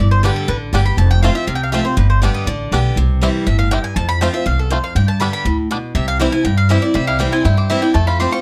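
Dry, close and detailed, this joyful, lively bluegrass fragment from a longer piece races along at 241 BPM in C major, tuned slightly low to A4 = 436 Hz. The woody, thumpy upright bass sits up front with a dark pizzicato pulse, alongside a bright, fresh-strung picked steel-string guitar whose finger squeaks are audible. The mandolin takes a solo in double-string stabs while the twangy, percussive fingerpicked banjo carries the melody from 0.2 s over a G, F and C progression.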